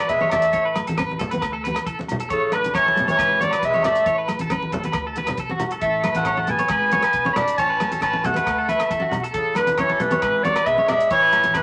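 A straight 4/4 pulse at 136 BPM drives this sunny, danceable highlife guitar band piece in A major, cut from a longer work. A cloth-damped, thuddy drum kit with tight kick, hi-hat and rim click joins low-tuned, thin-skinned congas and ringing agogo bells, while a woody pizzicato upright bass on gut strings sits in the background. Up front, a forceful, punchy clarinet carries the jazz-style melody with vibrato over a raspy, gritty tenor saxophone second line, as a twangy, slightly broken-up electric guitar picks tremolo arpeggios above a full-bodied, fingerpicked nylon-string guitar, all framed by moderate studio reverb and vinyl crackle.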